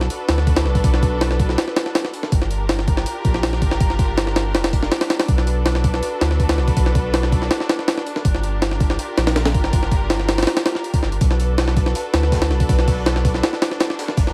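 Raw and dark, this drum and bass excerpt runs at 162 BPM in B minor, with a jungle edge and a prominent haze of vinyl crackle over a small room ambience. A sampler-style jungle kit sits up front for the full length, its compressed, pitched-up hits gritty and tape-tinged, with a thumpy kick and a high-tuned snare driving a straight 4/4 pulse. Underneath, a saturated sub bass holds deep, thick triangle tones with a fast attack, sustained low in the register and pushed forward in the mix. A lush bowed string section sustains close, focused chords with vibrato, moving between Bm7 and Gm7 and giving the grit a moody, cinematic backdrop. At 11.2 seconds a second, very quiet breakbeat kit slips in, an acoustic, saturated layer with a smooth, rolled-off top that adds a shadowy crunch beneath the main drums.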